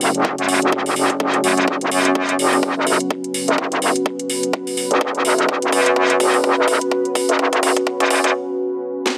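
This excerpt opens on a dark, detuned analog pad holding sustained chords in F# minor, joined at once by a metallic wobble bass and a house drum kit of cracking snare and metallic hats, with an overdriven, punchy electronic kick arriving at 0.2 seconds. It's a gritty, aggressive bass house cut at 126 BPM in 4/4, with a 57% swing on the sixteenths giving the groove its shuffle. The wobble bass sits up front, its FM-and-sine tone bright, saturated through tube warmth and thickened with chorus, and it pumps against the kick along with the slow-blooming, sub-octave pad. The whole passage works as a build-up, with a drum fill running from 1.7 to 8.3 seconds. At 8.3 seconds the kick and bass drop away for a short break, leaving the moody pad and the tape-tinged kit to carry it out under a light reverb.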